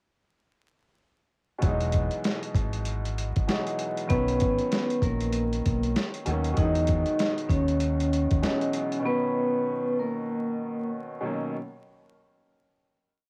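A laid-back, swung boom-bap beat opens this short, soulful and confident hip-hop piece at 1.6 s. A gritty, overdriven sampler-style kit with a thumpy kick and sixteenth-note hats arrives together with a deep, round fingered electric bass line and a bright, woody upright piano holding rootless Emaj9 and Bmaj7 chords through filtered cassette-tape coloring. At 4.1 s a vibraphone with medium hard mallets enters up front with a ringing, octave-doubled looping melody carrying slow motor vibrato and tape echo, all set in a dry home-cassette sound flecked with vinyl crackle.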